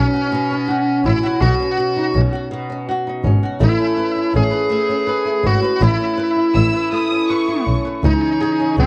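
Aching and melancholic, this six-eight pop ballad, cut from a longer piece and recorded at home on cassette with little reverb, sets a smooth overdriven electric lead guitar with tape echo up front over bright, fingerpicked, double-tracked flamenco guitar, joined at 1.0 s by a dark, woody bowed double bass with vibrato, while a lush violin section with expressive portamento sings a high second line from 6.6 s and a soft, intimate sul tasto string section holds chords in the background from 8.0 s.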